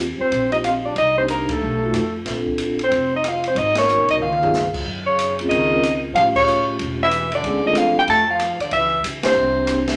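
A dark soprano saxophone carries the melody up front, its punchy tone shaded with vibrato, while a plunger-muted trombone sings a close-miked second line with a wah-wah colour and a gentle attack. The piece is a swinging, playful slice of small-group jazz in the swing-and-bop vein, cut from a longer performance and moving through rich extended chords. A vibraphone played with soft mallets fills in the harmony with a mellow, ringing shimmer from its motor vibrato, and a woody, thumpy upright bass on gut strings plucks the low end. The acoustic drum kit sounds natural in a small room, with dusky cymbals and a boomy kick, and plays a brief fill at 4.2 seconds before the second section arrives at 4.9 seconds. Band accents punctuate the phrases, and the recording sits in a large, wet studio reverb with a touch of tube saturation.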